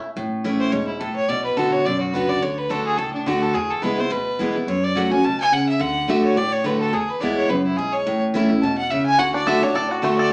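Swinging along at a brisk 213 BPM in 4/4, this rustic, virtuosic bluegrass fragment in A major opens on bright, full-bodied picked steel-string acoustic guitar up front, joined by a dark, thumpy pizzicato upright bass sitting in the background. A clear, earthy bowed fiddle carries the melody with light vibrato from 0.6 seconds over a progression through A, Bm, D, E and F#m, and a twangy, percussive banjo played with fingerpicks comes in on melody at 9.2 seconds. A short, wet studio reverb places the group further back in the room, with a small-speaker character to the sound.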